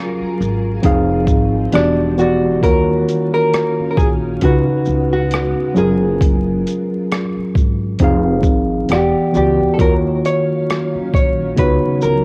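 Vinyl crackle and the warmth of a home cassette recording with light reverb frame this hazy, reflective lo-fi hip hop excerpt in Eb minor at 67 BPM with a swung 16th-note feel, where a dark, picked hollow-body jazz guitar carries the melody over a worn, slightly out-of-tune tine electric piano and a blurred granular cloud pad in the background, joined at 0.2 seconds by a woody pizzicato upright bass and at 0.4 seconds by a gritty, pitched-down boom bap sampler-style kit with a thumpy kick, rim clicks, hi-hat and shaker, as the chords cycle through Gbmaj9, Fm7, Em9, Ebm9 and Db7sus4.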